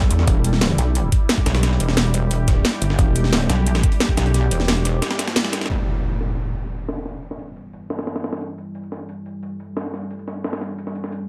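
This excerpt from a dark, futuristic technical drum and bass track opens at 177 BPM in E minor, with a deep, moody ambient pad holding sustained chords under sidechain pumping, chorus and its own reverb. Up front, a pulsing, heavy wobble bass with a saturated, mellow sine tone drives the drop alongside a knocking electronic kick, while a metallic, aggressive FM wobble bass stabs in briefly on E1. Two layered drum kits fill out the groove: one brings a cracking snare and metallic, tape-tinged hats through low-pass filtering, and a gritty, compressed breakbeat kit adds a high-tuned snare, both re-recorded in a small room. The drop gives way to a short break at 5.0 seconds and a band accent at 5.4 seconds, before an electronic impact hits at 5.7 seconds. From there the pad carries on with a filter sweep alongside the breakbeat kit, in a dry, close mix.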